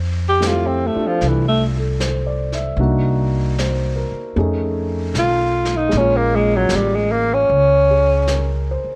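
Upright bass opens this intimate, late-night jazz ballad at 76 BPM in 4/4, its pizzicato tone woody and up front over a swung eighth-note feel. At 0.3 s the tenor saxophone takes the melody as a solo, breathy and mellow with light vibrato, scooped notes and a smooth top, sitting close to the listener. A warm concert grand piano with deep bass comes in underneath at 0.4 s, quieter in the mix as it moves through Fmaj9, Cm7b5, F7alt and Bbm7. A distant, roomy brush kit of snare and hi-hat stays far back, barely above the floor of the sound. Light reverb and the worn, warbling pitch drift of old cassette tape give this cut-off excerpt a faded, nostalgic haze.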